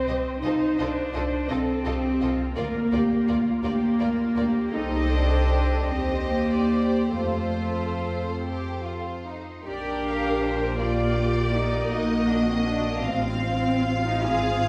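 Moving in a rubato 6/8 at roughly 46-57 BPM in dotted quarters, this lyrical, serene slow romantic movement for string orchestra in Bb major, cut from a longer piece, sets a clear, pure violin section's floating sul tasto melody above a second violin line, a dark, woody viola section with lush vibrato, a soft-attack cello section carrying the bass, and a distant double bass section beneath, all bowed and heard from further back in a concert hall with wet reverb, the harmony moving from F7/C through Cm to F before a new passage at 9.7 s turns from Bb to Ebm/Bb and settles on F7/A.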